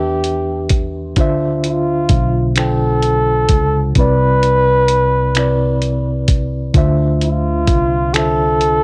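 A slow, straight 6/8 groove at 43 BPM opens this late-night, yearning R&B excerpt in D dorian, with a gritty, compressed sampler-style kit of finger snaps, hi-hat and thumpy kick joining at 0.2 s under a dark, round fretless bass touched by transformer saturation and subtle chorus. Up front, a reedy electric piano with fast tremolo lays down Em7, Dm9 and Cmaj9 chords, while a solo flugelhorn sings a smooth, soft-attacked jazz melody with vibrato and slapback echo. The whole mix sits dry and close on worn cassette tape, its warbly pitch drift adding a hazy, aged tint.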